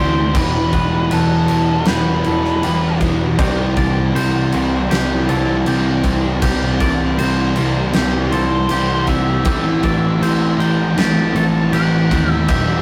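A dark, distorted octave-fuzz lead guitar carries the melody in this melancholic, dreamy shoegaze and dream pop excerpt at 79 BPM, dropping out at 3.0 seconds and returning at 8.3, over a twangy, bright, compressed electric guitar playing clean arpeggios, an overdriven semi-hollow guitar riff, a thick, dark fuzz guitar riff, a growling overdriven picked bass and a huge arena drum kit with a fat snare, punchy kick and bright cymbals, all moving through Em, C and Am7 in a rough rehearsal-room sound with saturation and moderate reverb.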